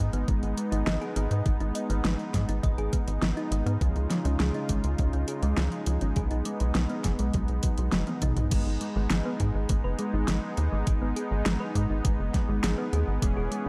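A soft, detuned supersaw opens this moody, cinematic synthwave passage at 102 BPM, its mellow sustained chords pumping against the beat, while a round, tine-like FM pluck spins arpeggios through chorus, digital delay and a vintage 12-bit sampler grit. Underneath, a tight sequencer bass built from sawtooth and square waves drives forward with a punchy filter pluck, a fast attack and decaying notes, sitting up front in the mix. A fat-snared pop drum kit with crash, hi-hat and toms enters at 0.1 seconds, overdriven and re-recorded in a small room, and is joined at 0.3 seconds by a layered electronic kick with an overdriven, knocking tone. The harmony moves from G#m to C#add9 and then B6, and a drum fill at 8.1 seconds leads into a new section at 8.5 seconds. Light reverb and a dark production give the piece a brooding, night-drive atmosphere, and it is cut from a longer piece.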